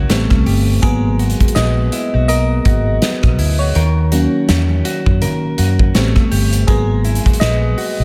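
A glassy, bell-like FM electric piano, shimmering with chorus and phaser, takes the solo across this late-night, sensual contemporary R&B excerpt on a swung sixteenth feel, as a clean, compressed direct guitar picks arpeggios through spring reverb and tape echo over a dark, round, foam-muted fingered bass and an up-front studio kit of punchy kick, medium-tuned snare, rim click and hi-hat in a pumping small room.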